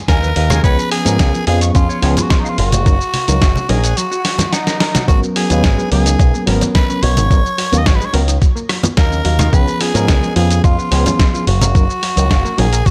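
A raspy tenor saxophone melody with tape echo opens this sensual, groovy nu-disco passage over a thumpy electronic kick, a dusty sampler-style kit with a fat snare, hi-hat, rim click and shaker re-recorded in a large room, a punchy, up-front picked bass through an envelope filter, and a clean semi-hollow guitar riff with ensemble chorus tucked in the background. Bright, dry congas and an overdriven, reedy electric piano with fast tremolo and sidechain pumping join within the first second. During a drum fill that begins at 4.2 seconds the guitar drops out, and a very quiet, round analog pluck takes up arpeggios from 5.1 seconds until this cut from a longer piece ends.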